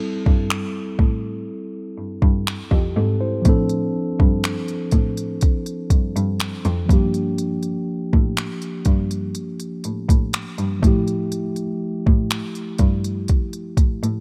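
A slow, straight groove of soft kick, smooth hi-hat and finger snaps from an electronic, tape-warm R&B kit sits up front and leads the mix in this longing, sensual contemporary R&B fragment cut from a longer piece. A mellow, clean tine electric piano opens alone at 0.0 seconds, laying down Am7, Dm7, Gm7 and Fmaj9 chords. At 0.3 seconds a single bowed cello, dark and veiled under its mute with vibrato, joins along with the kit to carry the low bass line. The sound is dry, with little reverb around the parts.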